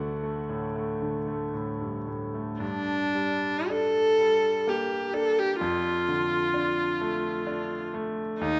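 The viola carries the melody from 2.6 seconds, a single bowed line with a clear, smooth tone and vibrato, sitting close and up front between D4 and A4. This is a romantic classical duo in G minor, elegiac and melancholic, moving in a slow 3/4 at around 54 to 65 BPM with a rubato feel. The grand piano plays accompaniment from the very start, spanning D2 to F#5 with a brilliant, polished sound and deep bass, present in the mix though sitting beneath the viola. It opens alone on a D chord before the harmony turns to G minor as the viola enters, then moves to D minor over F at 5.6 seconds. A moderate recital hall reverb surrounds the pair, and the passage is cut from a longer piece.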